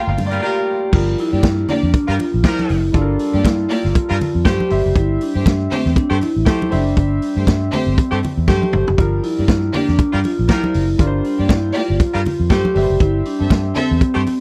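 A dry, close 1970s-style studio sound frames this driving, danceable disco groove at 119 BPM in G dorian, moving between Gm7 and Am7 with a lightly swung sixteenth feel and opening on a band accent. Up front sit a punchy vintage drum kit with dark cymbals, which plays a short fill at 8.5 seconds, and a round, foam-muted fingered electric bass, while thick-skinned congas stay in the background. A mellow, ringing vibraphone with soft mallets carries the melody, a brilliant baby grand piano accompanies, distant, lush bowed strings add a second line, and a roomy horn section delivers stabs with slapback echo.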